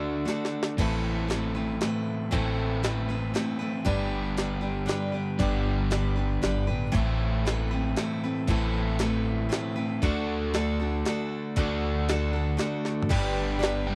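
A straight three-beat lilt drives this wistful, dusty fragment of folk rock and heartland rock, cut from a longer piece. A gritty, compressed drum kit with a sampler-style character, pitched up and overdriven, sits up front with a thumpy kick and a high-tuned snare, opening with a short fill at 0.3 seconds and adding another near the close. A woody, growly upright bass plucks low beneath a full-bodied picked dreadnought acoustic guitar, while a crunchy, double-tracked electric guitar plays a bright overdriven riff alongside. The chords move between D, Amadd9 and G. A reedy, clean electric piano slips in very quietly at 13.1 seconds, just before the fragment ends. The sound is dry and close, like a 1970s studio recording with little reverb.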